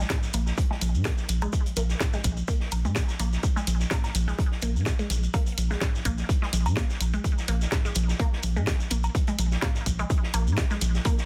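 A 4/4 groove with swung 16ths drives this clinical, quirky minimal techno excerpt: a punchy electronic kick and a thick, saturated sub bass sit up front beside a house kit with a cracking snare, while a squelchy, resonant blip pluck riff with phaser and delay pumps against the sidechain, and a warm vintage acoustic kit and delayed electronic toms, cowbell and congas fill the background, joined by grainy maracas, under a dense, heavily limited master.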